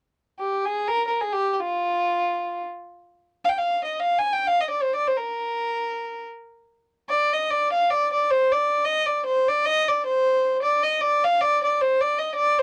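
Balkan folk in free time, this wild, virtuosic fragment of a longer piece features a single dark, nasal violin with a reedy gut-string tone and period style, bowed up front from 0.4 to 12.6 seconds in a dry, close 1970s-style studio sound.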